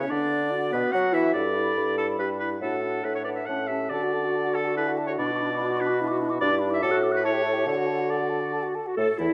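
Cheerful and lively, this quick classical-period movement for wind quintet sways in three with a rubato feel, a short passage cut from a longer piece. An airy, hollow flute with vibrato and a soft attack carries the melody, while an up-front oboe with light vibrato sings a second line, a bright, smooth-topped clarinet and a mellow French horn set distant in the background fill out the accompaniment, and a punchy, warm bassoon anchors the bass. A wet recital-hall reverb surrounds the ensemble as the harmony moves through Bm, Em7/G, D/A and A7 before settling on D at 7.7 seconds.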